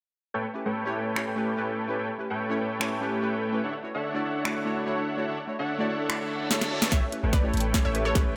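A half-time pulse in 4/4 drives this lush, bittersweet future bass excerpt, with a trap kit of finger snaps, bright hats and a sharp snare arriving at 1.2 s, up front as if re-recorded in a small room. A huge, thick supersaw riff carries the harmony from A7 to Dmaj7 and back, its detuned sawtooth stack with a sub octave pumping against the sidechain under a low-pass filter and digital delay. Beneath it, glassy digital keys add a chorused, wave-folded shimmer roughened by vintage 12-bit sampler grit. An electronic reverse cymbal rises in the background at 6.3 s and leads into a drum fill. From 6.9 s the build-up begins: a hard-clipped electronic kick, a deep, long 808-style sine bass on A1, and a bright, ring-modulated unison pluck melody with a noise layer and filter sweep all enter. A moderate hall reverb gives the mix a plush sense of space.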